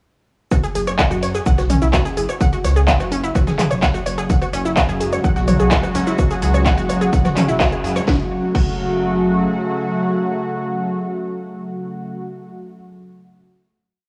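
A melodic techno piece at 127 BPM in F# minor opens at 0.5 s with an analog pluck cycling a 12-step arpeggio that drifts against the bar, chorused, tape-worn and pumping, over a heavy, overdriven four-on-the-floor kick, an up-front techno kit with cracking snare, smooth hats, claps, rim, shaker, toms and crash, and a very quiet, gritty looped breakbeat. A deep, rumbling detuned saw bass joins at 0.8 s in a dotted rhythm, and a lush, thick unison pad swells in with a slow attack from 5.0 s. After a band accent at 7.6 s, the drop moving from F#sus2 resolves to a final F#m chord held by the pad until 12.3 s, leaving a cinematic, melancholic air in a lightly reverberant, cassette-recorded home sound.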